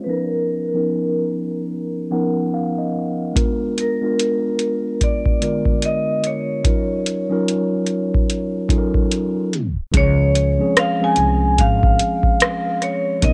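A bright, ringing vibraphone played with hard mallets carries the melody in this dreamy, nostalgic lo-fi hip hop excerpt, its medium motor vibrato softened by a low-pass filter. Beneath it, a mellow, clean tine electric piano sits up front with cassette-tape coloring and its own filtered haze, slipping in a short fill before the beat arrives. An analog drum machine enters at 3.4 seconds with a deep kick, metallic hi-hats and rim clicks, roughened by vintage 12-bit sampler grit and swung lazily at 73 BPM in 4/4. The chords drift from Cbmaj9#11 through Bb7b9 and Ebm9 before a tape stop at 9.5 seconds gives way to a new section on Dbmaj7. There, at 9.9 seconds, a woody, growly pizzicato upright bass joins, while light reverb and a cassette sheen tie the sound together.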